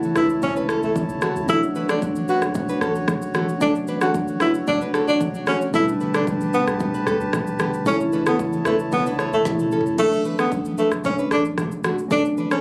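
Captured on a phone in the room, the recording carries a light club reverb around a romantic, joyful afrobeats groove at 113 BPM in 4/4 with a straight feel, in D major, cut from a longer piece. Up front, a breathy tenor saxophone sings the melody in a jazz style, with vibrato, soft attacks, scooped notes and a delay trailing its lines. A dark, fingerpicked classical nylon-string guitar plays a riff with its own delay, while a clean tine electric piano, heard as if through built-in speakers, supplies the accompaniment. A reedy, close-miked hand-pumped harmonium breathes full, mellow sustained chords with a sidechain pumping until 10.0 seconds. Underneath, an electronic, produced drum kit with a deep kick, woody snare, rim click, shaker, toms and crash cymbal has a tape-warm sheen, joined in the background by distant, low-tuned congas played with soft hands and a punchy sine sub bass with a pitch-drop attack. 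The harmony moves from A through Dmaj7 and Gadd9 back to A, and a drum fill at 9.5 seconds leads into a new section that settles on Dmaj7.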